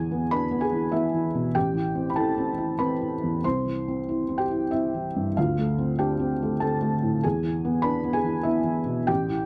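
The recording has a dry, close feel recalling a 1970s studio, with light reverb around a felt-muted upright piano that sits up front. This short excerpt, cut from a longer piece, is neoclassical minimalist piano music, tender and intimate in mood. The tempo is 96 BPM in 3/4 time, played with a rubato feel, and the instrument is tuned to A4 = 436 Hz. The piano plays solo from 0.0 to 9.5 seconds, ranging from A1 to C6, its tone soft and mellow through the felt. The harmony moves from E7 through Am, C and Dm7 before returning to E7 at 7.2 seconds.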